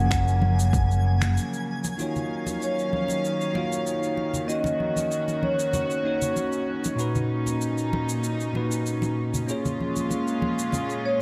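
A dark, metallic vibraphone with delay carries the melody in this smooth, relaxed sunset chillout excerpt at 96 BPM in F# major, over a bright, bell-like tine electric piano with delay and soft-attack, floating bowed strings, while a round, up-front fretless bass with lush chorus, a punchy electronic kick and a twinkling granular shimmer are all gone by 2.0 seconds, leaving overdriven electronic finger snaps and cabasa plus close, dry congas to continue under a light reverb.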